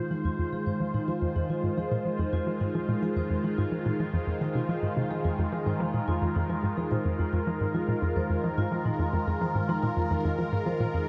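Ambient, sequencer-driven space music at 108 BPM in F minor, this hypnotic, cosmic cut from a longer piece rests on a swirling, detuned sawtooth pad holding an up-front Fm7, while mellow, soft-mallet vibraphone arpeggios ring with fast motor vibrato and tape echo, a hollow, bouncy square-wave pluck riff sits low with chorus and cassette-tape grit, a filter sweep runs through the synth arpeggio sound, and a huge ambient reverb with a 7.3-second tail bathes the whole mix.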